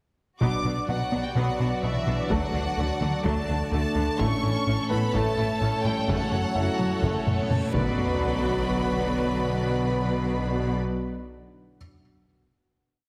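A brooding, vast hybrid orchestral and electronic film score opens at 0.4 s with a clear violin section carrying the smooth vibrato melody over a lush second violin line, focused violas driving an ostinato, rich cellos and clear double basses, roomy French horns doubling the tune at the octave, soft-attack trombones, a rubbery, nasal square-wave bass riff and heavy, distant taiko, soon joined by a deep, detuned ambient pad with chorus and a very quiet felt-muted upright piano offering sparse single notes, until a drum fill, a reverse cymbal and a huge sub drop land the final hit at 8.0 s, the whole piece bathed in wet scoring-stage reverb and a heavily compressed radio sound.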